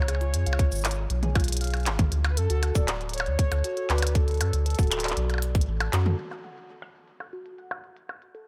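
A warbling, nostalgic synth lead opens this melancholic, eerie IDM fragment, riding over a round, deep analog bass and a glitchy drum kit of clicky hi-hats, handclaps, shaker, toms and percussion blips, with low-pass filtering muffling the hats, toms and percussion. A soft, harp-like synth pluck follows almost at once with ringing arpeggios that carry chorus, delay and a gritty 12-bit sampler edge. A tight electronic kick sits up front from 0.6 seconds, beside the nasal, dark bass, while the detuned lead floats with chorus, delay and vibrato. The lead and kick both stop at 5.7 seconds, and from 6.2 seconds a filter sweep washes over the pluck as the harmony settles onto F#m. The drums have a tape-warm, large-room character, yet the overall mix stays dry.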